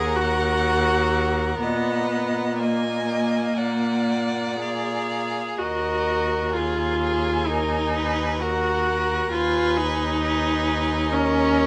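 A clear, up-front viola carries the accompaniment at the heart of this yearning, elegiac slow romantic movement for string quartet in Eb minor, bowed with vibrato beneath a warm, expressive violin melody shaped by portamento and a rich, close second violin line, while a smooth, even cello anchors the bass, the quartet moving in a rubato 4/4 at around 56-68 BPM through Ebm, Bb and an Fm7b5/Eb chord at 9.3 s, set in a large studio reverb and cut from a longer piece.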